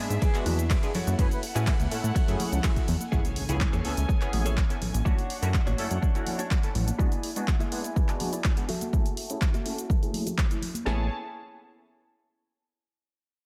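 This joyful, feel-good filtered disco house excerpt at 124 BPM in A major opens on a funky, detuned sawtooth polysynth comp, a dark bowed violin section with gritty vintage sampler character, and a fat analog bass with tube saturation, all pumping against an up-front, overdriven drum machine kick and snare. Handclaps, hi-hat, ride and a background egg shaker and congas fill out the straight 4/4 groove, while a pure concert flute phrase with delay appears briefly and a clean, direct-recorded electric guitar picks a compressed riff through a progression of E7, F#m7, Amaj7 and Dmaj7. A very quiet electronic impact lands at 3.1 s as a filter sweep begins on the bass and synth, and the bass, silent from 6.9 s, returns at 10.9 s on Amaj7.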